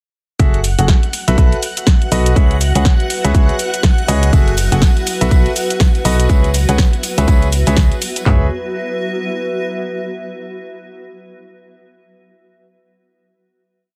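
At 0.4 s this soulful, bittersweet piano house drop launches at 122 BPM in C# minor with a swung feel: a punchy four-on-the-floor kick, claps and toms sit up front beside a snare, bright hats and cabasa, while a round, mellow FM bass, a clear grand piano riff in close voicing with audible action noise and digital delay, and faint, shimmering string-machine violins holding a high note all pump against the kick. A cloudy, detuned granular pad drifts in at 1.7 s and a tambourine joins in the background at 4.3 s, as the chords cycle through F#m9, B7sus4 and C#m7. The pad then carries the final chord out to 10.2 s, closing a dense, heavily limited and fairly dry mix.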